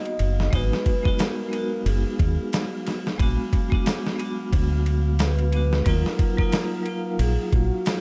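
Trip hop at 90 BPM in Eb harmonic minor, this melancholic, hypnotic excerpt swings its sixteenths over a Bmaj7, Abm7, Bb7b9b13 and Ebmadd9 progression, anchored by a round, punchy fingered dub bass and a gritty, overdriven sampler-style drum kit of thumpy kick, snare and ride, both up front. A metallic vibraphone played with hard mallets rings through tremolo and tape echo, while a pure, breathy sine lead carries the melody through lush chorus and dub echo. An airy, wind-like tuned noise texture drifts in the background with its own reverb, joined at 1.2 seconds by a vintage, band-limited egg shaker, in a dark, dry production.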